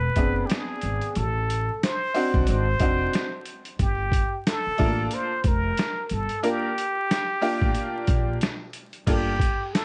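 A plunger-muted trumpet carries the melody up front, its wah-wah tone bright and close-miked with light vibrato and scooped notes, over a gritty, compressed boom bap drum kit with a thumpy kick and tape-warm, pitched-down character. This mellow, nocturnal jazz-hop cut in G minor moves at 91 BPM with a swung 16th feel, as a woody, growly pizzicato upright bass and a brilliant, worn, slightly detuned upright piano move through chords from E7b13 to Gm9. Vinyl crackle and studio ambience sit around this brief excerpt from a longer piece, which runs just under 10 seconds.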